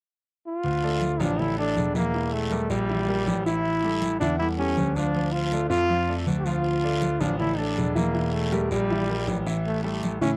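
A dry, close recording with a 1970s studio character and a light touch of reverb opens this short, danceable salsa cut from a longer piece, driving along in a straight 4/4 over a minor-key progression that moves from Dm through Edim to A7. A brilliant trombone takes the solo melody up front from 0.5 seconds, its smooth top and light vibrato giving the line a pop-style polish. Beneath it, a bright concert grand piano carries the bass from 0.6 seconds with deep, open low notes and long sustain, also placed up front. A clear baby grand piano joins as accompaniment at 0.8 seconds, sitting present in the mix. Low-tuned congas with a thick-skinned, warm tone sit in the background of a small room, while an acoustic guiro adds a raspy scrape to the percussion.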